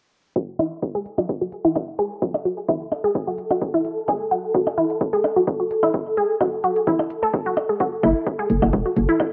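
A hazy, cassette-dulled sound with a moderate spring reverb and a filtered top end frames this short cut from a sparse, clinical minimal techno track in straight 4/4. A squelchy, detuned blip pluck carries the riff up front from the start, its chorus and analog delay smeared by tape and pumping against the beat while a filter sweep runs across the whole passage. A punchy, high-passed electronic kick drives underneath, joined by a faint hi-hat set far back and by claves and percussion blips trailed by tape echo. At 2.4 seconds a swarming, tense drone rises slowly on a single held note, its granular, mellow haze breathing with the same pumping. Near the close a barely audible, grainy cabasa slips in, and at 8.0 seconds a hollow, bouncy FM bass knocks in up front with tube saturation, over a lone F# minor chord.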